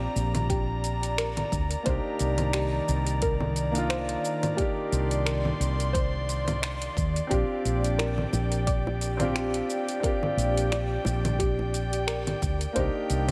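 Sunset chillout at 88 BPM in Bb major, sunny and blissful, where a growly, woody fretless electric bass sits up front beneath a dark, mellow baby grand piano with delay, an airy pad carrying chorus and vintage 12-bit sampler grit, a soft round pluck playing arpeggios in the background, an overdriven deep kick and a deep house kit of congas, finger snaps, metallic hi-hat and shaker, while low-tuned, dry bongos join from 8.0 to 11.7 seconds, all moving between Bb6 and Cm9 under light reverb in this excerpt from a longer piece.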